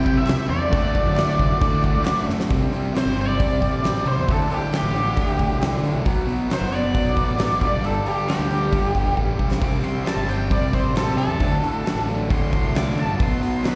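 Classic rock at 135 BPM in D mixolydian, this swaggering, sunny clip from a longer piece sounds like a live gig heard through a venue's PA, with recital hall reverb around it. A huge arena drum kit sits up front with bright cymbals, a fat snare and a punchy kick, playing fills at 2.3 seconds and again around 9.2 seconds. A crisp group handclap, very quiet, joins only in the opening 2.2 seconds. Two overdriven, picked guitars, a cranked stack guitar and a distorted electric guitar with slapback echo, carry the riff in the background while a growling fingered electric bass adds gritty, amped weight underneath. The octave-fuzz lead guitar stands up front with a warm fuzz tone shaped by wah, plate reverb and slapback echo, launching into a solo at 2.5 seconds that runs to the end over chords moving through Dsus4, Bm and G before settling on power chords.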